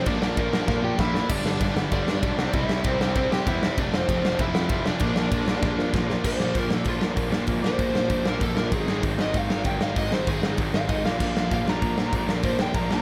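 Punk rock at 194 BPM in a straight 4/4, this short cut from a longer piece is energetic and upbeat, with little reverb and a dry sound. A big acoustic rock drum kit sits up front with a punchy kick, medium-tuned snare, hi-hat, ride and bright crash cymbals, throwing in fills at 0.7 and 5.6 seconds. Behind it, a tight, distorted guitar and a hollow-bodied, overdriven semi-hollow guitar play riffs, while a growly fuzz bass, picked and overdriven, anchors the low end. A biting lead guitar with a warm overdriven tone carries the melody from the start and breaks into a solo at 6.2 seconds. The harmony moves through Bb, G, C and F before the second half shifts between Ab and Bb.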